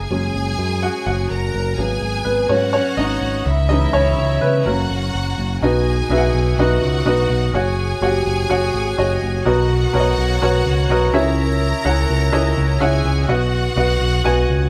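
This uplifting pop passage in B major opens with a worn, woody upright piano taking a solo through the first 5.6 seconds, its slightly detuned tone and long sustain sitting up front while a picked electric bass and a studio violin section play beneath it. The tempo is a steady 125 BPM in a straight 4/4, and the harmony moves through F#sus2, G#m7, C#m and F# before settling on B. After the solo, the piano continues as accompaniment while the direct, up-front bass anchors the low end with a warm, electric tone. The violin section carries a second line with lush, focused bowing and vibrato, though it sits further back than the piano and bass. The chords in this later stretch pass through Bmaj7 and C#m before returning to B. A moderate stone-room reverb gives the band the feel of playing live together in one space, and the music is cut from a longer piece.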